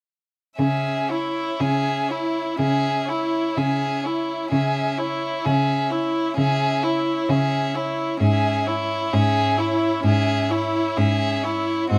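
Close, detailed microphones and a light reverb give this recording of a string quartet an intimate sound. It is a slow, romantic classical movement in C# minor and 4/4, cut from a longer piece, moving at roughly 57-67 BPM with a rubato feel and a melancholic, solemn mood. All four bowed players enter together at 0.6 seconds. The first violin carries the melody, its warm, expressive tone softened by vibrato and portamento and set back at a distance. The second violin sits up front with a rich, focused second line, while the viola fills in a smooth, even accompaniment with light vibrato beneath it. The clear cello anchors the bass, smooth and even with vibrato, as the harmony rests on C# minor before shifting to C#m/G# at 8.2 seconds.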